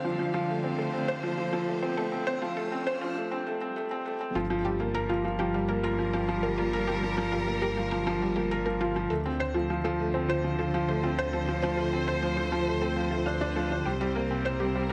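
A soft, felt-muted upright piano leads this moving, melancholic piano-and-strings electronica fragment, its mellow riff sitting up front with audible action noise and a trailing delay. Beneath it, a rich chamber string section holds bowed, vibrato-laden chords, while a lush, detuned unison pluck traces very quiet arpeggios, and a dark saw bass rumbles with a deep, beating tone. In G minor at 101 BPM in a straight 4/4, the opening build-up moves over Dm7 as an electronic riser climbs in the background from 0.3 s, giving way to a brief break where a swell takes over. The drop arrives at 4.4 s on Gm7, with the piano, strings, pluck and bass carrying on through the harmony's return to Dm7. A wet recital-hall reverb with a small-room ambience wraps the mix, lending the intimate piano an air of quiet grief.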